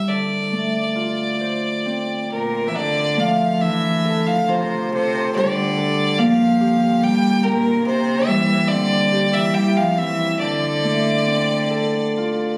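A biting, intense fiddle with light vibrato and a smooth top carries the melody up front in this haunting, longing Celtic slow air in 3/4, its rubato phrasing floating over a mellow, ringing fingerpicked harp that moves from Dm7 through Gm and C before returning to Dm7. An earthy cello with an airy bow enters at 2.3 s on a close second line. The trio sits in a moderate recital-hall reverb, captured on a phone in the room, and the recording is cut from a longer piece.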